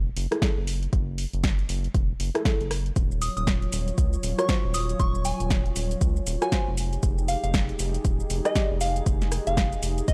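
Warm and deep in mood, this brief excerpt from a longer deep house track moves at 118 BPM in 4/4 with a swung sixteenth-note feel. A round, up-front analog bass opens at the start, saturated through tubes and pumping against the sidechain, while an overdriven electronic kick, with a deep thump, and a kit of hi-hat, rim click, shaker and punchy snare arrive within the first half second. A soft, nasal chord stab, colored by chorus and cassette tape, carries a filter sweep throughout and outlines Gbm9 before shifting to Ebm9 at 3.0 seconds and Fm9 at 6.8 seconds. At 3.0 seconds a moody, detuned analog pad swells in beneath with a slow attack, joined moments later by a gentle, warbling FM bell melody that trails tape echo. The whole recording sounds dry and gritty, with hardware and transformer saturation giving it a close, analog edge.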